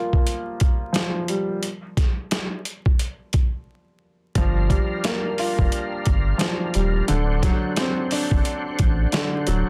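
Boom-bap hip-hop with a moody, dark swing, this excerpt opens on a vintage, short-sustain grand piano under a filter sweep and a gritty, compressed sampler-style kit with a thumpy kick, breaks down from 1.6 to 4.4 seconds, then at 4.4 seconds adds a deep, round dub sub bass and a thick, overdriven tonewheel organ with chorus vibrato and slow rotary speaker, in a dry, heavily limited mix dusted with vinyl crackle.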